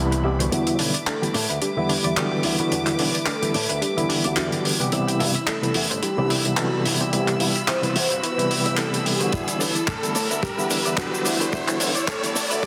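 Groovy and sensual, this nu-disco cut in E minor moves at 109 BPM with a lightly swung 16th feel, as a gritty, overdriven tine electric piano with fast tremolo and tape echo carries the chords over a punchy picked electric bass through an envelope filter and a dry, up-front damped 70s drum kit with handclaps, hi-hat and shaker, while a dark, bowed chamber string section pumps softly in the background and a round analog pluck with chorus and cassette-tape grit spins arpeggios; a thick, detuned unison sawtooth lead with vibrato enters at 0.5 s, just after the opening noise sweep, as a riser builds beneath it, and a tight kick drum with a rolled-off top joins at 9.3 s, all set in a moderate echo-chamber reverb and a dense, heavily limited master.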